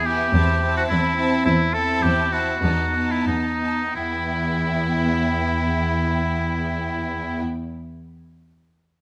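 Close, detailed microphones in a moderately reverberant recital hall give this short excerpt from a quick classical-period movement for symphony orchestra an intimate yet airy sound. Set in E minor and 2/4 with a rubato feel and a tempo ranging from 85 to 108 BPM, the music is stormy and restless, slowing down between 0.9 and 4.0 seconds as the harmony moves from Am/E to B7/E at 2.6 seconds. Up front, a cello section plays the bass on a low E with smooth, even bowing and vibrato, while a solo oboe, clear and present with light vibrato, carries a second line in classical style. A distant, focused violin section plays another second line in the middle register, and a lush viola section adds expressive accompaniment with soft attacks and portamento. The melody sits high in a rich violin section that stays in the background, and the passage turns to new material at 4.0 seconds.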